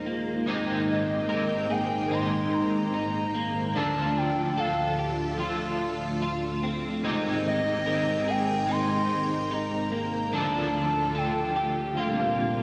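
A straight 4/4 pulse at 73 BPM sets an unhurried pace for this ethereal, blissful dream pop excerpt in Ab lydian, tuned to A4 = 437 Hz. A lush, vintage string machine holds full-bodied sawtooth chords with a sub octave, slow attack and long release, sitting up front and thickened by ensemble chorus, while a slightly broken-up electric guitar picks arpeggios through ensemble chorus and delay. A second guitar at the edge of break-up, twangy and picked, enters at 0.5 seconds with accompaniment pulsing through tremolo and ensemble chorus. From 0.9 seconds a hollow, woody clarinet-like synth lead carries the melody high above, its soft square and triangle tone touched with a noise layer, vibrato, chorus and delay. The harmony rocks between Abmaj7 and Dm before turning to Bb6 at 12.0 seconds, and a 3.0-second hall reverb soaks the mix in a dreamy haze.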